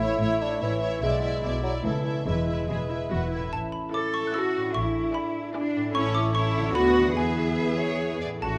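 This playful, whimsical film cue in A major moves at 147 BPM in a straight 3/4. It opens with the full string body sounding together: a lush symphonic violin section carries the melody with expressive vibrato and a soft attack, while a focused chamber violin section traces a second line over smooth, even violas. Beneath them, an up-front cello section and a chamber double bass section with a smooth top anchor the bass, a mellow solo bassoon adds accompaniment, and a fingerpicked concert harp rings out arpeggios in the background. The bassoon stops at 3.1 s, and at 3.5 s a new section begins as a woody, dry xylophone played with rubber mallets takes up the melody high above the strings, joined by a classical-style French horn section holding sustained chords with light vibrato. The harmony moves through A and E chords, touching Bm/D before arriving on E, and a moderate scoring-stage reverb gives this passage, cut from a longer piece, a magical glow.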